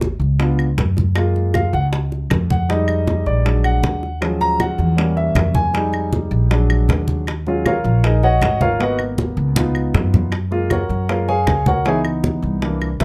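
Afro-Cuban jazz in Eb minor at 157 BPM, fiery and sultry, with a clear, polished grand piano soloing up front over a chord run that moves from Db7b9 through Ebm11 and Edim7 to F#maj9 and C#m7. A growly, dark pizzicato upright bass with steel strings anchors the low end while thick-skinned, low-tuned congas, saturated and compressed bongos, and dry, woody claves entering at 0.6 seconds drive the groove. A drum fill at 9.6 seconds leads into a restatement of the opening section, all captured with close, detailed microphones and light reverb in this cut from a longer piece.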